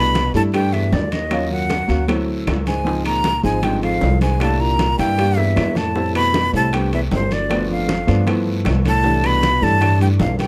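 Lively and sunny, this Afro-Cuban jazz passage cut from a longer piece moves at 155 BPM in a straight 4/4 feel in C major. A breathy metal flute carries the melody up front with vibrato and a crisp, chiffy attack, while a mellow baritone saxophone plays a low second line in the background with a soft subtone and light vibrato. A warm baby grand piano accompanies with an intimate tone, short sustain and audible action noise, and a dark, thumpy pizzicato upright bass on gut strings sits up front. The percussion bed layers bright, damped congas, tight high-tuned bongos played with soft hands, distant ringing metal-shell timbales, woody claves and a raspy, saturated guiro, with a drum fill from 5.2 to 6.0 seconds. The harmony moves from C6 through Ebm7, D9, Dbmaj7, C9, Fmaj9 and G7 before settling back on C6, captured with close, detailed microphones and very little reverb.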